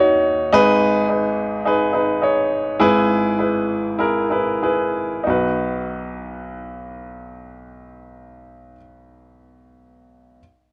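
A pop excerpt with an uplifting, warm mood, built entirely around a clear baby grand piano that carries the accompaniment from 0.0 to 10.4 seconds. The piano sits present and up front, its polished tone spanning a register from deep bass notes to the middle of the keyboard. Moderate plate reverb with a long tail gives it space, while a worn, warbling old-cassette character adds a warbly pitch drift to the sound. The harmony moves from D#m7 through G#m and E/G#, and the pace slows down between 0.5 and 5.3 seconds before the music settles on a B chord at 5.3 seconds to open a new section. Cut from a longer piece, it feels like a warm, uplifting fragment of a larger song.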